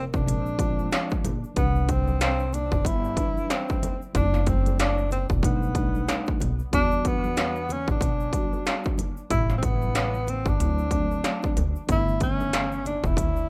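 A swung 4/4 jazz-hop groove rides on an up-front industrial drum kit with a heavy kick, clanging snare and crisp hats, beneath a smoky, cool tenor saxophone solo that is breathy and subtoned, with vibrato, scooped notes, a smooth top and analog delay, joined by a woody, thumpy pizzicato upright bass, a clean, mellow tine electric piano accompanying from 0.3 seconds, and soft-handed egg shaker and congas ringing in the background, set in a small room with a rough home-demo feel.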